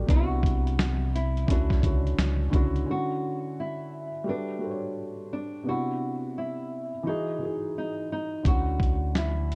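Lo-fi hip hop at 86 BPM in D major with a swung 16th feel, dreamy and nostalgic. A soft, felt-muted upright piano with audible action noise, coloured by cassette tape and a low-pass filter, drifts through Cmaj9, Dmaj9, Gmaj9 and Emaj9 chords, while a fingerpicked nylon-string guitar carries a melody through its own low-pass filter and analog delay. A gritty, compressed soul sampler-style drum kit with a thumpy kick and 12-bit crunch sits up front beside a round, punchy dub bass; both drop away around 2.9 seconds and return at 8.5 seconds, all within a dark, warm production with light reverb and digital ambience, cut from a longer piece.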